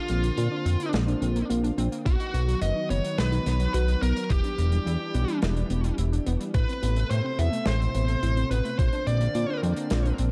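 Synthwave at 107 BPM in a straight 4/4, this short excerpt carries a cinematic, moody air through a dark production with light reverb and a small-room ambience. A bluesy, overdriven electric guitar carries the picked melody between F4 and E5, its distortion trailed by a digital delay, and it stops at 9.6 seconds. Beneath it, a thick, detuned analog bass sits up front with tube saturation and sidechain pumping, while a lush, warbling unison pad holds slow-attack chords in the background, coloured by chorus and pumping alongside the bass. A punchy, decaying unison pluck spins delayed arpeggios between F#3 and F#4, and an acoustic kit supplies hi-hat and a medium-tuned snare. A thumpy, tape-toned electronic kick joins at 2.1 seconds and drops out at 8.9, under a progression that moves from Bbadd9 through B, Em7 and Amadd9 before returning to Bbadd9.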